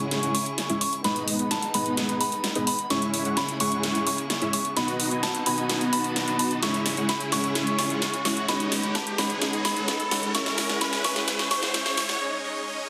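This emotional, anthemic festival progressive house build-up at 129 BPM in C# minor opens with everything at once: a huge, detuned supersaw riff with tape echo and a filter sweep, a huge-snared, metallic-hatted dance drum kit rolling through a fill, a soft FM bell melody with chorus, and dark, bowed studio strings holding lush chords. A saturated sub bass sits barely audible beneath, while an electronic riser enters in the background at 2.8 seconds. The cut builds over C#m, G#m and B before dropping to a break at 12.2 seconds, where the supersaw alone carries on over a G#sus4 chord in a dense, heavily limited mix bathed in moderate hall reverb.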